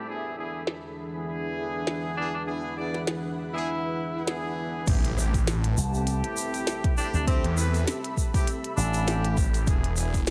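Glitch hop at 100 BPM in A dorian with a gritty, funky swing, where a dark analog pad with chorus, a punchy horn section with delay and a blurred granular cloud pad all pump under sidechain from the start, an overdriven glitchy drum kit of clicky hats and a tiny snare enters at 0.7 seconds, a vibrato-laden tenor saxophone with 12-bit sampler grit and delay carries the melody from 2.2 seconds, and at the 4.9-second drop a swirling phased saw bass, a punchy tape-toned electronic kick, a grainy egg shaker and a faint impact arrive, joined by a bright enveloped slap bass, all over E7 and Am7 chords in light digital ambience in this cut from a longer piece.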